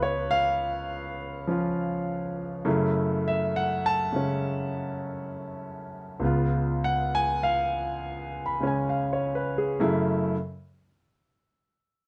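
A clear concert grand piano plays alone from the start in this late-night, smoky solo jazz excerpt, moving at a slow, swung pace over a dominant-to-minor seventh chord pattern. The instrument sits up front with a natural tone and deep bass, framed by a moderate club reverb. At 9.8 seconds the music turns to a new passage, and the piano stops at 10.3 seconds.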